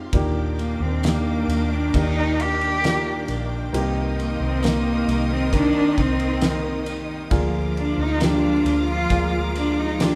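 A bowed solo cello carries the melody up front, its rich, focused tone shaded with vibrato as it enters at 0.6 seconds and sings across a slow 67 BPM pop ballad in Eb major. The mood is emotional and heartfelt, built over a straight 4/4 feel and a chord movement from Ebmaj7 to Cm7 to Bb7/D. Beneath it, an upright piano supplies intimate, woody accompaniment with audible action noise, while a clear, lush string section holds sustained chords and a cello section adds an intense second line with a smooth top. A dark, foam-muted fingered electric bass sits round and up front, and a damped 70s drum kit keeps time on kick, snare and ride with a fat snare, tight kick and dark cymbals, joined by a very quiet, jingly tambourine. The whole band sounds as if playing live in one room, set in a moderate large studio reverb, in this passage cut from a longer piece.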